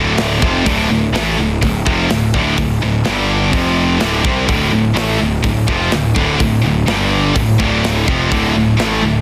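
A pair of bright, high-gain distorted guitars drives this heavy, aggressive heavy metal excerpt in D minor at 125 BPM, one of them set in the background, with a very quiet, double-tracked fuzz guitar thickening the riff as it moves through Dm, G5 and F5. A growly, overdriven fuzz bass underpins the low end, and a tight acoustic kit of kick, medium-tuned snare and hi-hat enters at 0.2 seconds in a mid-forward studio room sound. Light reverb sits on a dense, heavily limited modern master.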